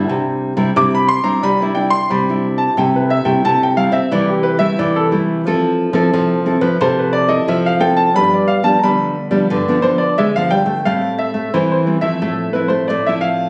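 Two nylon-string guitars open this lively, nostalgic samba and choro fragment at 89 BPM in a straight 4/4: one dark and classical, fingerpicking chords from Cadd9 through Am7/C, Fmaj7 and G7, the other thumb-plucking a bass line. At 0.8 seconds a smooth, vintage grand piano enters up front with a solo melody that runs until 10.9 seconds, when the harmony shifts to Am7 and Fmaj7/A. Captured on a phone in the room, the sound carries moderate studio reverb and compression, with the piano sitting slightly louder than the guitars.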